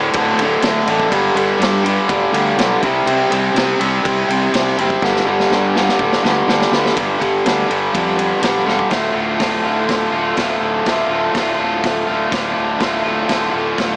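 Garage rock at 123 BPM in D minor, raw and menacing, with a bright, double-tracked overdriven guitar riff up front over a round, fuzzed fingered bass and a vintage acoustic drum kit with dark cymbals and a punchy kick, moving through power chords on D, G and C before drum fills from 5.0 seconds lead to a D minor chord at 8.9 seconds, all in light reverb with a small-speaker sound, in a short cut from a longer piece.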